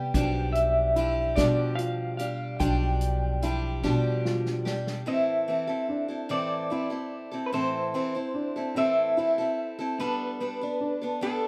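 Warm and peaceful, this acoustic folk fragment in 6/8 is led by a slightly broken-up electric guitar melody with tremolo, its small old amp giving a dark, compressed, lo-fi tone. A bright, boxy parlour steel-string guitar sits up front with picked accompaniment, while a mellow, vintage upright piano adds smooth, short-sustained arpeggios, and a woody pizzicato upright bass plays alongside a natural country drum kit with a punchy kick. After a drum fill from 3.8 seconds, the bass and drums drop out at about 5 seconds, leaving the guitars and piano in moderate studio reverb.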